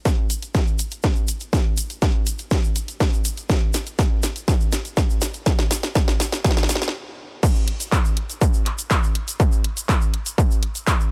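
A distorted, overdriven electronic kick sits up front in this hypnotic, melancholic techno excerpt, layered with an overdriven drum kit of cracking snare, handclaps, hi-hat and crash cymbal, their snare, hats and cymbals thinned by high-pass filtering. A grainy, mellow tube shaker sits close and dry beneath, and the whole sound carries little reverb. A drum fill drives the build-up until a brief stop at 6.9 seconds, before the drop lands at 7.4 seconds.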